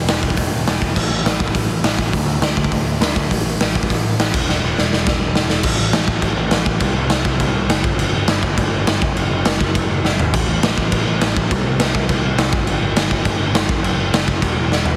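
A straight 4/4 beat drives this energetic, upbeat punk rock at 205 BPM, with a raw, gritty garage drum kit up front, its punchy kick and medium-tuned snare ringing in a pumping stone room, beside a growling, overdriven picked electric bass, all in a dry, heavily compressed radio sound, while the drums break into fills at 4.5, 10.0 and 14.7 seconds in this piece cut from a longer track.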